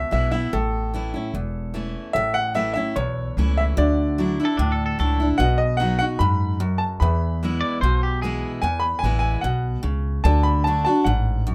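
Sunny and heartfelt, this country excerpt moves at a straight 148 BPM in A major, cut from a longer piece. A bright upright piano carries the melody up front, its brilliant tone coming with audible action noise and a woody, polished presence. Beneath it, a picked steel-string acoustic guitar gives full-bodied accompaniment with a touch of finger squeak, while a thumpy, dark upright bass anchors the low end. From 2.1 seconds a warm, vintage concert grand piano adds smooth accompaniment in the background, and between 4.5 and 8.5 seconds a twangy, compressed electric guitar plays a clean second line through analog delay. The harmony passes from E through A, Dadd9 and B before returning to E and settling on D, all within light reverb and the rough feel of a home demo mix.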